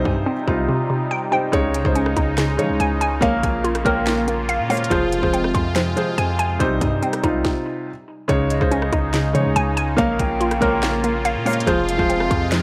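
Half-time trap drums at 142 BPM in 4/4 drive this hard-hitting, melancholic hip hop excerpt, with a hard-clipped kick, sharp snare, crisp hats, handclaps and rim clicks. The drums drop out at 0.7 seconds during an opening break, and the full groove halts for a stop at 7.4 seconds. A soft, felt-muted upright piano sits up front, its audible action noise lending an intimate feel, while a sweeping resonant pad of detuned sawtooth layers swells slowly with chorus beneath it. A glassy, crystalline wavetable pluck spins arpeggios through chorus and tape echo, and a punchy, heavy 808-style bass with tube saturation anchors the low end. From 8.5 seconds a hollow concert flute with vibrato enters in the background as a second line, touched by tape echo. The harmony cycles through Cm, Dbsus2, Bbm and Fm, and the dry, gritty recording carries light digital reverb.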